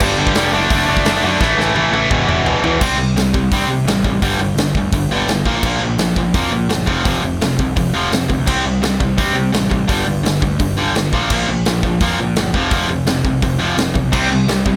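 A bright, overdriven electric guitar drives this rowdy, upbeat punk rock excerpt at 170 BPM, picking a riff up front over power chords that move from G5 through Bb5, F5 and C5. A second overdriven guitar sits in the background, playing only through the opening 2.8 seconds and returning at 14.1 seconds. A fuzz-laden picked electric bass and a punchy, natural-sounding rock kit with bright cymbals fill in beneath, the drums taking a fill from 1.4 seconds, all in a dry sound.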